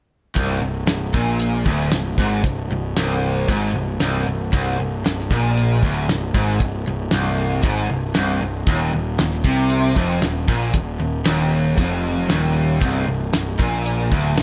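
Classic rock with a gritty, swaggering mood, cut from a longer piece and set in a straight 4/4. Two electric guitars enter together at 0.4 s with a low riff: one bright and distorted, sitting up front, and the other overdriven and compressed, both picked. Beneath them a fuzz-soaked picked electric bass adds a punchy, up-front low end with its own overdrive. A cloth-damped acoustic drum kit recorded in a small room thuds along on hi-hat, tight kick and a fat snare, its rolled-off top giving it a muffled, close feel. The harmony holds a Bb9/C colour before shifting to Eb5 at 8.7 s, then drops to an unharmonised riff at 12.8 s, all wrapped in a light reverb.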